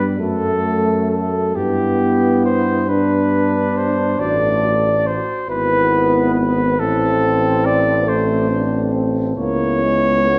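In a slow, rubato 6/8 at 46 BPM in dotted quarters, this serene, lyrical fragment of a hymn-like classical brass band piece unfolds over chords moving from F#m through G, D7/A, E/G# and Am to C#m7 within about 10.4 seconds. A mellow, smooth-topped flugelhorn carries the melody up front, while a French horn section with light vibrato sings a second line in the background, and a trombone and a distant, roomy euphonium that is very quiet supply the accompaniment. Underneath, a tuba plays the bass, its warm tone up front, and a moderate concert hall reverb gives the ensemble a gentle glow.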